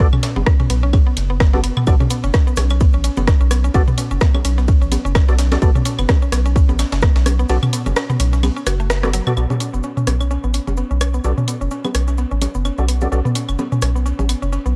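Sparse and hypnotic, this minimal techno excerpt at 128 BPM in B minor swings lightly over a punchy, up-front electronic kick that drops out at 7.1 s, a deep, round analog bass pumping under sidechain, a woody mallet-like synth pluck riff with chorus and tape echo, hollow organ-like stabs through ensemble chorus and analog delay that get a filter sweep from 9.4 s, bongos, claves, rim clicks and toms from an organic electronic kit, house hi-hats, a gritty pitched-up breakbeat ride and snare tucked in the background, and a grainy cabasa, all shaped by a short break, a band accent at 8.9 s and a dry, gritty cassette-tape sound as the chords move from Bm7 to B7(no3).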